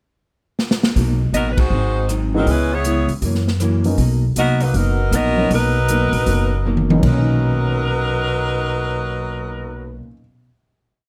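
A bright saxophone section carries an energetic, brassy big band swing melody of call phrases in four-part block harmony with vibrato, over a punchy-kicked, airy drum kit keeping time on the hi-hat with a fill from 0.6 seconds, a woody pizzicato upright bass in a two-feel, syncopated rootless comping from a warm baby grand piano entering at 2.3 seconds, and dark, clean four-to-the-bar strumming from a hollow-body archtop guitar, under light reverb, closing on a final chord at 7.0 seconds.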